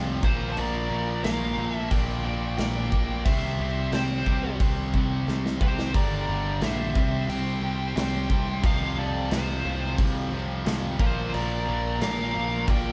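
A straight 4/4 pulse at 89 BPM drives this aggressive, menacing hard rock excerpt, where a big-room acoustic drum kit with bright cymbals and a fill at 5.3 seconds backs a growly, up-front picked electric bass and three riffing guitars in the background (an overdriven cranked stack with spring reverb, a double-tracked, compressed distorted electric, and a high-gain distorted one), while a dark high-gain lead guitar carries the melody above a fuzz-laden octave-fuzz lead guitar's second line, over Bb, C and Gm harmony captured as a band playing live in one room with moderate reverb.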